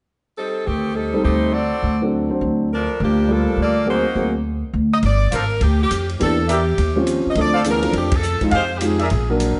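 Lightly reverberant and dark at the top, this swinging, sultry big band swing excerpt in G minor moves at 206 BPM, with a bright, close-miked saxophone section carrying the melody up front over woody pizzicato upright bass and a warm concert grand piano with deep bass. From 5.0 seconds a small-room drum kit with dark cymbals and a boomy kick joins on hi-hat, kick and ride, and mellow trumpet stabs with light vibrato and a smooth top follow, as rich extended chords such as Gm11 and Eb13 pass by. A band accent lands at 8.1 seconds.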